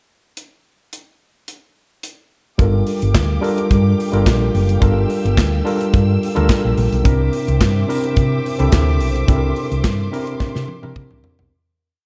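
A four-on-the-floor disco beat at 108 BPM in straight 4/4 opens this short, sultry and danceable piece in G dorian: the acoustic studio drum kit plays a pickup bar alone, with a punchy kick, open hi-hats on the off-beats, and a medium-tuned snare layered with handclaps, plus toms. At 2.6 seconds the groove begins as the rest of the band enters on a Gm7 chord that later moves to C9. The hollow-body short-scale electric bass sits up front, round and dark through its amp, playing a syncopated disco line with chromatic approach notes. A worn, slightly out-of-tune tine electric piano, lightly overdriven and heard through its built-in speakers, pushes spread-voiced chords with grace notes, while a lush string section sits lower in the mix, bowing sustained sul tasto chords with vibrato and a smooth top. The dry, dark, warm production keeps everything close and intimate, and the piece fades out from 9.3 seconds as a drum fill arrives at 10.4 seconds.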